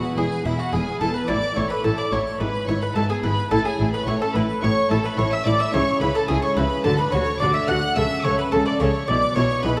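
Heard through a wet concert-hall reverb with a layer of vinyl crackle, this short cut from a longer baroque-style concerto movement moves at a lively, festive 108 BPM in A major. An up-front, woody mandolin carries the melody alongside a higher violin section with gut-string tone and a smooth top, while a second violin line, a dry, brilliant harpsichord and a dark, distant viola section fill in beneath. Nasal cellos and a rich double bass section anchor the harmony from 0.2 seconds, moving from E through C#m and D before settling on E/B.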